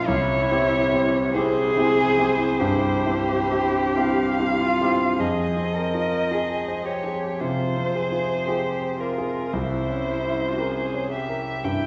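A muted violin carries the melody up front in this solemn, elegiac slow movement for piano quartet, its veiled, vibrato-laden line entering with a soft attack and heard close by a single bowed player. Beneath it, a muted cello sings a second line in a dark, close voice, sliding between notes with portamento, while a very quiet muted viola adds shadowy bowed accompaniment until it drops away at 11.4 s. A grand piano, warm and present with long sustain, sits up front and spans a deep range, grounding the strings in the 4/4 metre while the whole ensemble bends the time with rubato. The harmony moves from C to a mournful F minor as the second section begins at 5.2 s, then darkens further onto a C7b9 chord. A wet scoring-stage reverb places the quartet further back in the room, lending a hushed, spacious air to this excerpt cut from a longer piece.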